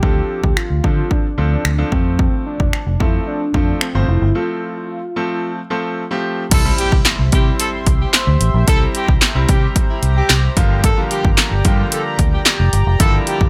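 Dance-pop at 111 BPM, euphoric and upbeat, where a velvety, detuned synth lead with chorus and delay carries the melody over clear grand piano, a dark, round muted electric bass and a punchy, tape-warm analog drum machine with snaps and handclaps up front, until a break from 4.4 s gives way at 6.5 s to a drop in which a horn section with light vibrato takes the melody, a shimmering pulse-width pad sustains chords, a very quiet electronic impact lands at 6.7 s, and the piano, bass, horns and pad all pump with sidechain in a dry mix.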